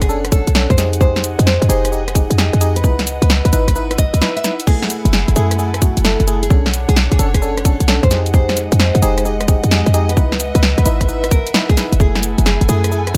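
Bouncy and moody, this two-step UK garage excerpt swings on a tight, layered electronic kick and a punchy analog drum machine carrying snare, hi-hat, rim click, shaker and crash, with a short, sine-based 808-style bass sitting up front beneath a cycle of minor ninth chords. A fingerpicked nylon-string guitar with audible finger squeak carries the melody through analog delay, while a glassy, bell-like FM electric piano adds chorused, delayed stabs. Behind them, an ethereal, airy pad and a dark, bowed studio string section with vibrato and portamento both pump under sidechain, all set in an echo-heavy mix with light reverb.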